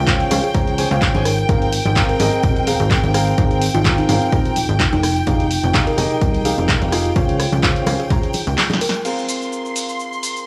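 Piano house in a joyful, euphoric mood: a worn grand piano riff with long sustain and tape echo, a plucky, wave-folded analog bass and clear, bowed violin-section chords held high with vibrato all pump with the sidechain. A punchy electronic kick and an analog drum machine of snare, handclaps, hi-hat, rim click, cabasa and crash drive a swung groove, with tambourine and congas tucked in the background and a buzzing, woody kalimba melody ringing through its own tape echo. The bass stops at 8.6 seconds as a drum fill leads to a band accent at 8.9 seconds, and the whole passage sounds like a dry, gritty hardware recording with transformer saturation in a small room.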